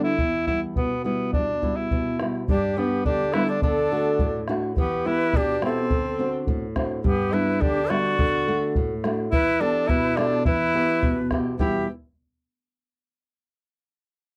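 A dry, close 1970s-style studio sound with light reverb frames this melancholic, wistful Andean folk excerpt in 2/4, where a tenor saxophone with light vibrato and a soft attack carries the melody up front beside a warm, fingerpicked flamenco guitar with audible finger squeak, a round, distant bombo enters at 0.2 s, and a breathy, bright large quena adds a second line from 2.5 s over chords moving through Em, G, D and D7.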